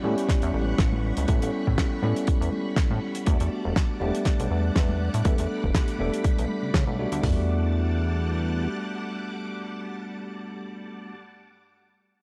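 A layered electronic house kit leads this groovy, cosmic nu-disco clip, its punchy kick, bright hats and toms sitting up front with studio reverb. Beneath it, a dry, damped 70s acoustic kit adds a fat snare and airy hi-hat, while soft-handed congas from a small room tick along very quietly, all with a gentle swing on the sixteenths. A glossy, nasal chorused synth bass blends pulse and sawtooth tones with a plucky filter and a moving notch, running until 8.7 s. A bell-like tine electric piano carries the accompaniment through a vintage 12-bit sampler grit, low-pass filter, tape echo and sidechain pumping, as a lush string machine with a sub octave and soft attack holds long chords under ensemble chorus, shifting from A13 to Em11 at 3.3 s. Once the drums drop out around 7.4 s, the keys, strings and bass carry on in a dry, gritty hardware sound, with the bass bowing out at 8.7 s and the keys and strings finishing the cut.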